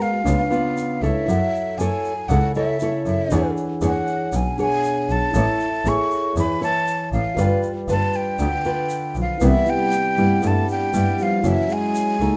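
Relaxed and romantic, this bossa nova excerpt moves at 118 BPM, with a close-miked, breathy silver concert flute singing the melody up front over fingerpicked nylon-string guitar with fresh strings and a mellow tine electric piano sitting in the background. A grainy egg shaker adds texture, and from 0.3 seconds a focused double bass, bowed with vibrato and up front, plays a bright bass line beneath chords that drift from F#m7 and E13 to Amaj7. At 9.2 seconds a dark trombone enters with scooped notes as a jazz-style second line, shortly before the harmony turns to Cmaj7 at 9.4 seconds, all in light reverb.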